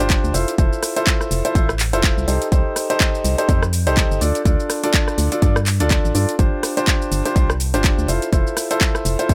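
A swung 124 BPM groove in 4/4 drives this euphoric, uplifting piano house excerpt, where a punchy, up-front electronic kick entering at 0.1 seconds joins a house kit of handclaps, metallic hi-hats, rim clicks and shaker beneath a hollow, dark organ-like FM bass and a clear, woody upright piano riff with audible action noise, the piano carrying dub echo and both bass and piano pumping to the sidechain over Fmaj7, Cm6, Dm and G7sus4 chords in a dry mix.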